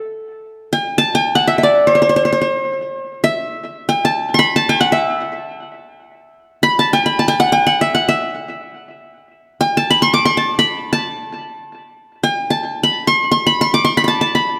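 In free time, this brief excerpt of Arabic maqam music unfolds with a stately, warm mood, centred on A in maqam rast. A solo qanun carries the whole passage from 0.0 to 14.6 seconds, ranging from A4 up to D6. Its tone is bright-edged and fingerpicked, with the shimmer of triple strings. The instrument sits up front, with an analog delay trailing its notes. A moderate recital hall reverb, lasting about 1.6 seconds, gives the recording a gentle sense of space, and the excerpt is cut from a longer piece.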